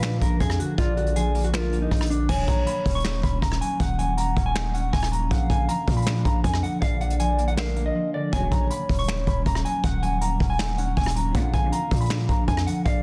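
A distorted 808-style bass anchors this brooding, hard-hitting trap excerpt, its heavy, aggressive sine tone roughened by a noise layer, striking fast and then decaying beneath a half-time groove at 159 BPM in Eb minor. Up front beside it, a vintage brush drum kit brings a punchy kick, a medium-tuned snare with soft clipping, dark cymbals, hi-hat, rim clicks, finger snaps and crashes, all with a rolled-off top and the feel of a small acoustic room. A dark, clean electric guitar carries the fingered melody over a ringing, fingerpicked concert harp, while a gliding portamento lead hums a smooth second line in the background, its triangle-and-sine tone thickened with chorus, vibrato and digital delay. The harmony moves between Bb and Ebm7, and the track drops into a brief silent gap at 8.0 s before a close, bowed string section stabs in with expressive vibrato and delay at 8.3 s and again at 11.3 s. 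The small room ambience sits inside a dense, heavily limited modern master.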